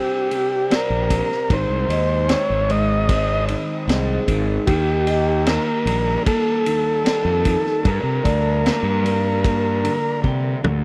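A reedy, overdriven combo organ with heavy vibrato and tape echo carries the melody up front in this trippy, mysterious psychedelic rock clip, over a bright, twangy, slightly broken-up guitar riff through a phaser, a round fuzz bass that enters at 0.9 seconds, and a vintage drum kit with dark cymbals and a punchy kick that closes on a fill at 10.2 seconds, captured in a dry, close 1970s-style studio sound.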